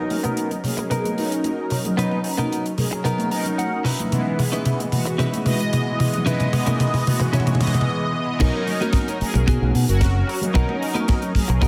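A straight 4/4 nu-disco groove opens this cosmic, sleek passage from a longer piece, with a tight funk drum kit rolling through a long fill of crash cymbal, hi-hat, high-tuned snare and toms while thin-skinned, band-limited congas tick along in the background. Up front, a mellow synth brass part carries the accompaniment with round, detuned sawtooth tones and an evolving filter sweep, colored by chorus, phaser, vibrato and a worn cassette-tape character. A bright, compressed clean electric guitar, picked and recorded direct, plays a riff through analog chorus and a low-pass filter, adding a short fill at 3.1 seconds. The harmony moves from Bmaj7 to C#m9 as the build-up rises, then a brief break at 7.9 seconds gives way to the drop at 8.4 seconds, where Bmaj7 returns. There a punchy fingered bass with an envelope filter and a dry, polished kick drum enter up front, grounding the groove beneath a dreamy mix soaked in lush hall reverb and diffuse ambient delay.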